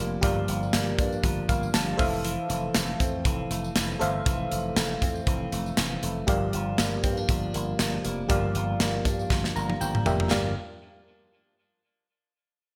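Lightly swung sixteenths drive this moody, urgent 1980s-style pop piece: an up-front, glassy FM electric piano with chorus carries the chords and adds a bell-like fill at 1.2 seconds, a compressed clean electric guitar picks a riff through subtle chorus and delay, a growly slap bass pushes through its envelope filter, a punchy studio drum kit with gated reverb sits alongside a very quiet, jingly tambourine, and the piano and drums both fill at 9.3 seconds, all set in a bright digital production with light small-room ambience.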